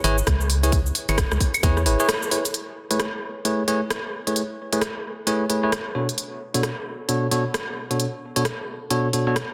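Late-night and soulful, this short two-step garage fragment, swung on the sixteenths, opens with bright, bell-like tine electric piano stabs through a low-pass filter sweep and dub echo, over C#m7 moving to Amaj7 and Bm7. A hollow, dark, organ-like FM bass with a fast, decaying attack sits up front until 2.0 seconds, while a tight, tape-warm electronic kick appears only between 0.3 and 1.7 seconds. The garage kit of crisp hi-hat, cabasa, claves and rim click, with soft clipping on the snare, carries through a band accent and brief break at 2.1 seconds into a dense, heavily limited mix bathed in plate reverb.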